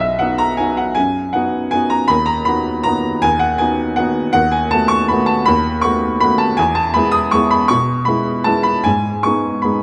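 A solo upright piano opens the recording with a clear, woody tone, placed up front and captured by close, detailed microphones. This is a classical piano waltz in 3/4 at 160 BPM. Its beats are uneven and the rubato phrasing gives it a playful, graceful character. The piano covers a broad span from B1 to D#6, beginning in B major and moving toward E major from 4.4 seconds. The harmony passes from B through B/D# and B7/D# to E and then G#m. A moderate recital hall reverb surrounds the open-sounding instrument across this short section, which is cut from a longer piece and runs to 9.8 seconds.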